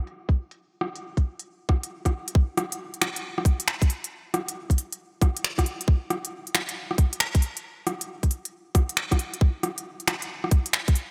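Nocturnal and melancholic, this future garage excerpt moves at 136 BPM in 4/4 with a 66% swing on the sixteenths, opening with a filter sweep across its first 2.4 seconds before settling into its second section. An organic electronic drum kit of finger snaps, crisp hi-hat and rim click sits up front with a gritty overdrive, alongside a tight, overdriven electronic kick that is the louder of the two parts. Both drum parts carry the close character of a small room, while the whole mix is darkened by a low-pass filter and touched with light reverb.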